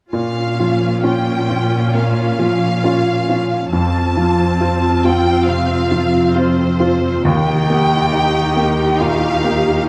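A bright, brilliant baby grand piano stands out in this bittersweet, moving cinematic passage, its open accompaniment spanning Eb2 to G4. Above it, a lush violin section carries the melody between C5 and A5, bowed with expressive vibrato and heard at a slight distance. A viola section fills the middle with portamento, a focused, smooth-topped cello section holds the bass, and a concert harp adds ringing, fingerpicked arpeggios in the background. The music moves freely in rubato around 68 BPM in 4/4, in Bb dorian, with the harmony passing through Bbm, F and Eb. All five parts play from 0.1 to 9.9 seconds in this short excerpt from a longer piece, captured with close, detailed microphones and light reverb.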